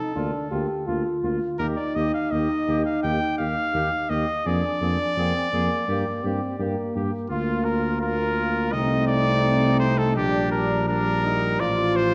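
Triumphant and noble, this rubato brass quintet passage, cut from a longer piece, sets a clear, up-front trumpet melody over a mellow, punchy, roomy French horn, a distant second trumpet with light vibrato, a background euphonium and a dark, punchy tuba bass, all bathed in the reverb of a recital hall.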